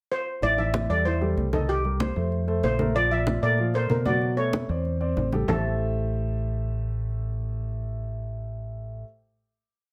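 A shimmering, metallic steel pan leads this short, fiery salsa piece, entering on a brief pickup at 0.1 s with a motif-based, song-like melody struck with medium rubber sticks and sitting airy and up front in the mix. Underneath, an upright piano plays a woody montuno in octaves with long sustain, while a deep, dark fingered electric bass drives a round, punchy tumbao that anticipates the chord changes. Low-tuned congas, played close and dry with soft hands, mix slaps and open strokes across high and low drums, adding a ringing, danceable pulse until they stop at 5.6 s. The harmony moves through Am7, Cm7, F, Bbmaj7, Bm9 and Amadd11 before settling on an Am7 final chord from 5.5 s to 8.0 s. Light reverb gives the whole complete piece a touch of space while keeping its energy tight and immediate.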